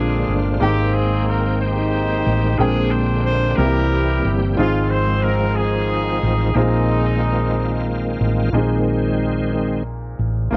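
A round, dark hollow-body electric bass sits up front in this uplifting, reverent gospel passage in 6/8, where a tight, vintage horn section carries the melody until 7.9 seconds over clear baby grand piano accompaniment and sustained chords from a bright, shouting tonewheel organ with slow rotary speaker, light overdrive and chorus vibrato, which takes a solo from 8.5 seconds to the end of this dry, close 1970s-style studio recording.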